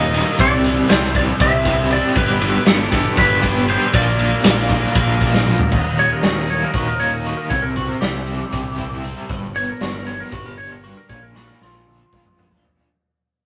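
A trippy, kaleidoscopic psychedelic rock passage in 7/8 opens with nearly everything at once: a crunchy, double-tracked overdriven guitar riff with tremolo sits up front beside a bright, twangy lap steel melody, while a buzzy vintage combo organ holds sustained chords with light vibrato in the background. Underneath, a growling fingered electric bass adds its own overdriven edge, and a moment later a raw garage drum kit joins to drive the groove with a punchy kick, a medium-tuned snare, hi-hat, ride, crash and toms, all saturated and gritty with a rolled-off top. The harmony cycles through C, G and Bb, and a drum fill leads into a new section at 5.7 seconds, where an electric slide guitar solo enters and the music begins to fade out. The organ stops at 9.3 seconds, and another drum fill starts at 11.4 seconds as the fade continues. A moderate small-room reverb gives the excerpt a close, compact space, cut from a longer piece.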